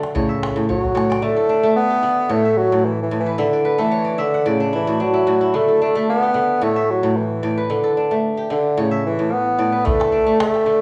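In a straight 4/4 pulse, this hypnotic fragment of West African traditional string music sets bright, ringing kora arpeggios, with a kora fill at 3.4 seconds, beneath a mellow, smooth-topped bassoon melody with light vibrato, both up front, over chords circling between A and D5, while a deep, dry calabash plays only at the opening, with a drum fill at 0.7 seconds, and returns at 9.9 seconds, in a moderate recital-hall reverb.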